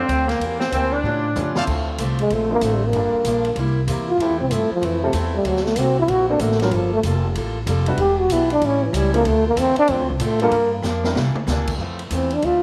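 Sultry and swinging, this big band jazz excerpt opens with a mellow saxophone section melody carrying slapback echo and tight, clear trumpet section stabs in the background, both gone by 1.6 seconds, over warm baby grand piano, woody, growly pizzicato upright bass, boxy picked archtop guitar and a swinging drum kit with a high-tuned snare and punchy kick, before a dark, breathy, intimate trombone solo with slapback echo enters up front at 2.2 seconds and carries on through to 12.6 seconds in a lightly reverberant studio room.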